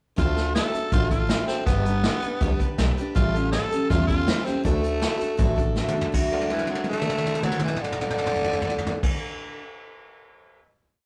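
A breathy, raspy tenor saxophone leads this short, upbeat rockabilly piece, playing up front with vibrato and a gritty, lick-based theme that returns. Set at 161 BPM in 4/4 with a straight feel in D major, it moves through a D, G, A7 and back to D progression before settling on a final chord at 6.1 seconds. A bright dreadnought acoustic guitar strums eighths in open chord shapes with fresh strings and a full body, and a finger squeak is audible. Pizzicato upright bass adds a woody, thumpy two-beat root-and-fifth line with walk-ups, its gut strings sounding warm. A vintage brush drum kit with dark cymbals, a punchy kick and a rolled-off top sits up front and plays fills before and across that final chord, ringing on alone until 10.6 seconds. The rough rehearsal-room recording carries light reverb, giving the whole a retro, rough-edged character.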